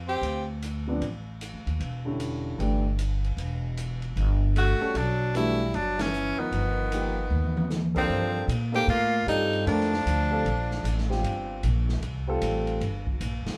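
Recorded live by a band in one room with moderate studio reverb, this excerpt of hypnotic, spiritual modal jazz swings in 4/4 over a woody, thumpy upright bass and a dark, smooth acoustic drum kit with a boomy kick and dark cymbals. After a brief opening note, two tenor saxophones play together from 4.6 to 11.1 seconds: a bright, punchy lead with light vibrato and scooped notes above a raspy, growling second voice. A concert grand piano with deep bass accompanies from 0.9 to 12.8 seconds, and after a band accent a drum fill leads into the second section.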